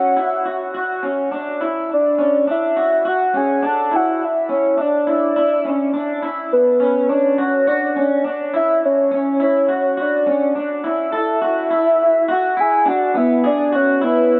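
The velvety synth lead carries the melody up front, its dark, smooth tone thickened with chorus, vibrato and tape echo, floating over a blissful, dreamy dream pop groove at 104 BPM in D lydian. Beneath it, an electric guitar through a small old amp picks twangy, slightly broken-up arpeggios in a lo-fi, lush chorus haze, moving through chords such as C#madd11 and Dadd9 before landing on E near 13.4 seconds. A long, wet plate reverb washes over this short excerpt cut from a longer piece.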